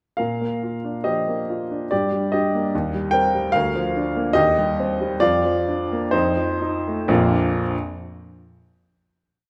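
This is a short romantic character piece for solo grand piano in Bb major, a complete miniature in 2/4 that moves with a free, rubato feel at roughly 60-74 BPM. The mood is hopeful and warm, with a harmony that passes from Bb through Gm, Cm/Eb and Bb/D before settling on F7 and resolving home to Bb. The piano sounds clear, intimate and natural, placed up front with audible action noise, and spans from Bb1 to G5. Its tune is voiced in sixths over inner broken chords, and the playing begins slowing down at 2.7 seconds, easing into the closing Bb chord at 7.1 seconds. A wet recital hall reverb wraps the instrument in a dark production, letting that last chord ring on after the keys stop at 7.8 seconds.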